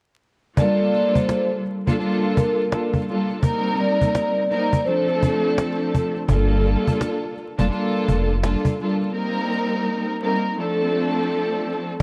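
A swung, snappy cajon with snares sets a close, dry boom-bap hip-hop groove in this tough, gritty cut, where lush, woody bowed strings with vibrato carry the chords beneath a mellow, metallic soft-mallet vibraphone melody with slapback echo that plays until 6.2 s and returns briefly at 12.0 s, as a deep, round sine sub bass enters up front at 6.3 s, the mix wrapped in light small-room ambience, worn cassette warble, pitch drift and vinyl crackle.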